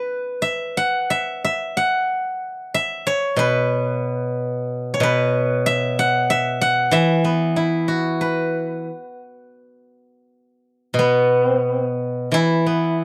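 A dry, close recording in a 1970s studio style with light reverb places a solo steel-string zither up front, its silvery, ringing tone plucked with fingerpicks in a flowing, elegant Chinese traditional piece that moves in a rubato 4/4 at roughly 81-94 BPM and turns to a new passage at 11.0 seconds before this cut from a longer work ends at 13.0 seconds.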